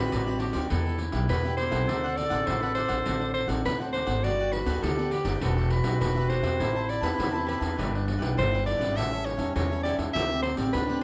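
Festive and joyful, this samba and choro moves at 102 BPM in a straight 4/4, with a breathy, close-miked soprano saxophone carrying the jazz-style melody up front with vibrato while a soft-attack clarinet adds a distant, roomy second line in a classical style. Beneath them, a crisp picked cavaquinho and a small fingerpicked nylon-string guitar, finger squeak audible, sit in the background, as a woody, thumpy pizzicato upright bass on gut strings stands out up front and a jingly pandeiro played with hard hands comes in at 0.1 s from a large, distant space. The band plays live in one room under moderate studio reverb, drifting through rich chords such as D9sus4, Gmaj9 and Am9 before arriving at D7sus4 as the cut from a longer piece ends at 11.0 s.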